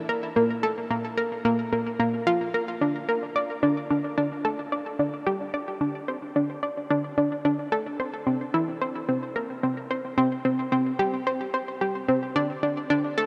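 A huge, wet ambient reverb with a tail of about 9.3 seconds surrounds this short, hypnotic and cosmic ambient extract at 110 BPM in a straight 4/4. A lone analog pluck plays throughout, sitting up front with a bright, round sawtooth-and-square tone, a sub octave beneath it and a quick filtered snap on each note. Chorus and delay trail its phrases as it moves between Bb3 and D5.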